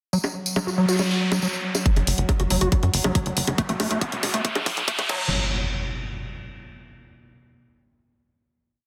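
Psychedelic trance at 139 BPM in a driving, psychedelic mood, opening with a squelchy, resonant overdriven acid bass riff drifting against the bar through digital delay, a jingly close tambourine, bright programmed hats, bongos and crash, and a warbling detuned wavetable pad droning in the background with chorus and sidechain pumping. At 1.9 seconds a tight four-on-the-floor electronic kick arrives as a build begins, joined at 2.0 seconds by a nasal, rolling sixteenth-note sequencer bass, with a riser, filter sweeps on the acid line and a drum fill from 3.6 seconds pushing toward a final hit of electronic transition effects. The dense, heavily limited master sits in a moderate digital room reverb.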